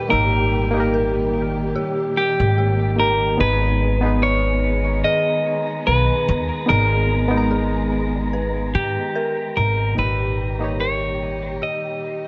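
Trip hop with a melancholic, hypnotic mood and a lazy swing, this cut from a longer piece puts a clean, picked electric guitar melody with warbly pitch drift and tape echo up front beside a woody pizzicato upright bass. Around them sit a barky, lightly overdriven reed electric piano with harmonic tremolo, a lush bowed string section with vibrato, and an eerie, inharmonic synth bell playing arpeggios in the background through chorus, phaser and 12-bit sampler grit, while an airy, wind-like noise layer enters at 4.6 s. A moderate spring reverb and small room ambience frame the mix, which fades out from 7.8 s.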